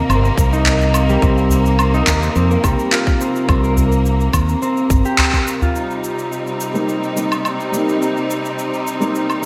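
A dark, round fretless electric bass sits up front in this mystical organic downtempo piece, pumping beneath smooth bowed symphonic strings and a ringing fingerpicked concert harp with delay and shimmer reverb, an airy wind-like noise layer in the background, a tight electronic kick, tape-toned electronic woodblock, shaker and handclaps with gated reverb, and a deep, dry udu, the band accenting together at 5.2 seconds before a soft felt-muted upright piano with audible action noise enters at 6.7 seconds over Cm7, all set in a lush hall with bright 1980s-style digital production.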